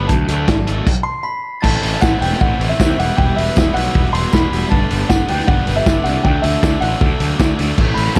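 A muffled, punchy vintage drum kit drives this restless, moody indie rock fragment alongside a growly fuzz bass, while a woody upright piano carries the melody over a bright high-gain guitar riff and a compressed, overdriven guitar with chorus and delay sitting further back; during a brief stop that begins at 0.9 seconds, a ringing glockenspiel with delay enters at 1.0 seconds, and a jingly tambourine joins at 2.0 seconds, all within a dark, lightly reverberant production.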